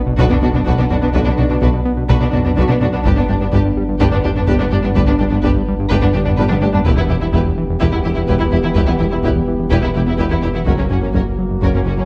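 Tense and brooding, this cinematic hybrid orchestral and electronic cue opens on an impact with a faint electronic sub drop, then a lush violin section sings an expressive, soft-attacked melody above a distant second violin line, rich violas, smooth cello and double bass sections, a very quiet tuba and mellow French horns, while a fat analog bass riff, a menacing detuned saw bass with a filter swell, a deep ambient pad arriving at 1.8 s and background taiko struck with hard sticks, which play a fill at 6.4 s, all sit in a moderate recital-hall reverb over a Bm–G–Em–F# progression.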